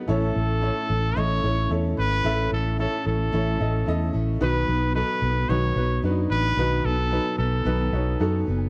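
A woody, boxy upright piano opens this uplifting pop excerpt together with a soft, flute-like tonewheel organ and a full-bodied jumbo steel-string acoustic guitar, all sounding from the very start. The organ sits very quietly underneath with sustained chords, coloured by chorus vibrato, key click and a rotary speaker, while the picked guitar plays a riff in the background with an audible finger squeak. At 0.1 seconds a dark, round, foam-muted electric bass enters up front with an amped, punchy vintage tone, and a bright solo trumpet carries the melody with light vibrato and a pop-style delivery. The harmony moves from A to B at 4.4 seconds. The sound is a dry, close 1970s-style studio recording in a small room, giving the whole fragment a warm feel.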